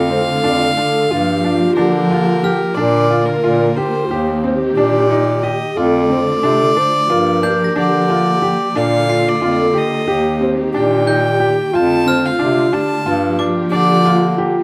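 Close, detailed and nearly dry, this hopeful, restless fragment of contemporary chamber music in 9/8 at 181 BPM (eighths) sets a nasal, gut-string violin melody over a pure, round sine lead with chorus and portamento, dark, lush studio strings holding chords, clear, boxy baby grand piano arpeggios, a vintage-toned bass clarinet on the bass line, and a sparkling glockenspiel with brass mallets in the background, all cycling through F6, Gm7, Bb and Eb.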